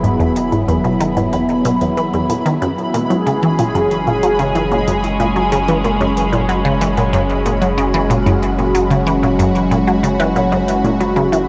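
A resonant blip pluck stands out up front, its squelchy, ring-modulated sawtooth riff snapping with a fast attack and short decay through phaser and tape echo. This short excerpt of ambient, sequencer-driven space music moves at 93 BPM in a straight 4/4, cosmic and luminous in mood, shifting from Eadd9 to F#sus2 at 2.6 seconds. A swirling, detuned analog pad holds sustained chords beside it, evolving with phaser and chorus and a soft attack with long release. Beneath them a round analog bass sits deep and dark with a slightly nasal tone, while electronic hi-hat and congas add metallic, overdriven hats with tape echo, re-recorded in a small room. In the background a pulsing gated texture, tempo-synced and chorused, holds a high B5 inside its own reverb. The whole is drenched in a huge ambient reverb with a 7.2 s tail, and lossy compression artefacts colour the sound.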